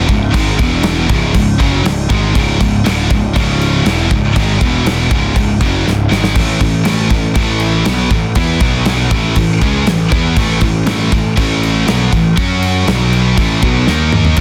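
This excerpt opens with two distorted high-gain electric guitars and a fuzz-laden picked bass striking together, with a modern acoustic drum kit entering at 0.1 seconds, setting a heavy, relentless heavy metal riff at 120 BPM in 4/4 with a straight feel in C# minor. Both guitars are bright and picked, one with a scooped tone, and they play riffs spanning C#2 to F#4, while the overdriven bass sits up front with a growly, fuzzy bite down to C#1. The drums, recorded in a small room and placed up front, feature a punchy kick, a medium-tuned snare, toms and crash cymbal, with fills at 5.9 and 13.9 seconds. The riff moves from C# minor and E power chords through A, B and F# power chords before landing on D#5 at the close. The sound is dry, and the master is dense and heavily limited in a modern style.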